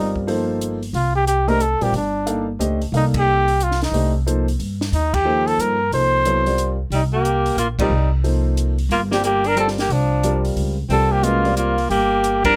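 Searching and hypnotic, this swung modal jazz waltz finds a mellow, close-miked trumpet with light vibrato carrying the melody up front over a clear, woody upright piano, a thumpy, gut-strung pizzicato upright bass and a dry cocktail drum kit with dark cymbals and a punchy kick, all resting on a single Cm11 chord in light reverb, while a vintage-toned tenor saxophone with scooped notes enters at 6.9 seconds with a second line and the band hits accents at moments such as 3.1 and 12.4 seconds.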